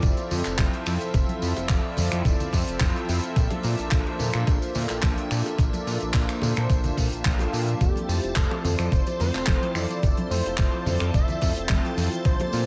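A warm, detuned analog pad, a lush vintage string machine with ensemble chorus and sidechain pumping, a fat sawtooth bass, a thumpy tape-toned electronic kick, a dry, airy funk kit with finger snaps, handclaps, hi-hat and tambourine, and hard-handed bongos and congas open this feel-good, groovy nu-disco excerpt at 108 BPM in F major, moving from Fmaj7 to Bbmaj7. After a faint electronic swell at 7.0 seconds, a thick, bold unison lead with vibrato, cassette tape and digital delay takes the melody at 7.8 seconds, as the chords return to Fmaj7. Beneath it, a soft, round, dark pluck plays arpeggios in the background, while the whole mix stays close and nearly free of reverb.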